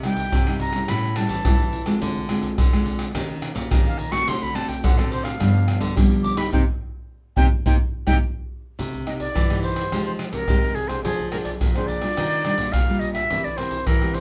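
A wet studio ambience surrounds this lively, nostalgic samba and choro piece at 106 BPM, where a breathy, close-miked concert flute carries the melody with a soft attack and straight tone over two fingerpicked nylon-string guitars, one full-bodied with fresh strings playing accompaniment through chords such as Cm7 and Ebmaj9 and the other holding the bass, both with audible finger squeak, while egg shaker, pandeiro, tamborim and a deep surdo make up the percussion, the band accenting from 6.5 seconds and a drum fill arriving at 7.7 seconds before a new section begins at 8.8 seconds.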